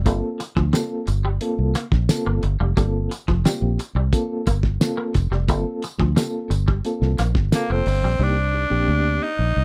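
A dry, close 1970s-style studio sound frames this funky, driving G minor groove at 88 BPM, cut from a longer piece, where a round, foam-muted fingered bass sits up front beside a muffled, cloth-damped drum kit with a fat snare and tight kick. A clean semi-hollow guitar riff with ensemble chorus, reedy electric piano stabs with fast tremolo and a jingly tambourine fill out the Gm11 vamp. At 7.5 seconds a raspy, forceful tenor saxophone enters with tape echo, carrying the melody as the harmony moves to Cm9 at 8.2 seconds. The electric piano plays on with it until 9.3 seconds, and the bass continues to the end at 9.6 seconds.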